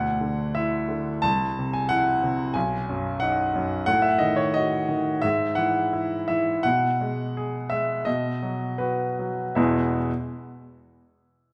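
A clear, natural grand piano sits up front in this passionate, lyrical romantic character piece, played with free rubato in 4/4 and bathed in a lush scoring-stage reverb, slowing between 2.6 and 9.6 seconds, where a new passage begins shortly before the piano stops at 10.1 seconds in this fragment cut from a longer work.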